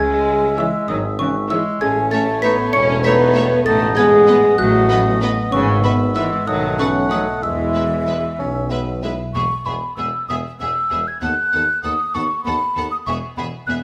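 Quirky and mischievous, this playful, whimsical cinematic film cue in E major moves at 65 BPM in 6/8, with a dry, close-miked xylophone played with rubber mallets carrying the tune until 8.4 seconds over dark, tight French horn chords, a mellow bassoon, a distant clarinet, an oboe and a pure, hollow concert flute that carries on to 13.7 seconds. Meanwhile the cello section, double bass section and tuba hold the bass, and from 0.6 seconds two violin sections add rich bowed vibrato from behind alongside a very quiet, close viola section, all inside a stone room reverb.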